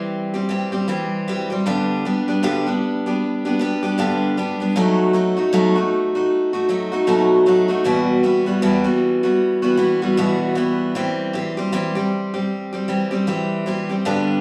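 This pop excerpt is heartfelt and easy-going, moving at an unhurried 77 BPM in 4/4 with a gentle swing on the sixteenth notes. A single picked steel-string acoustic guitar carries the whole piece on its own from start to finish, reaching from low bass notes up into its middle register. Its tone is bright and up front, with an auditorium-like body and the occasional finger squeak that keeps the performance human and close. The harmony opens on C/E and moves through G at 1.6 seconds, then B7 and Emadd9, before returning to C/E at 10.9 seconds. A wet, large studio reverb surrounds the guitar, giving the live-in-one-room performance a spacious, glowing tail.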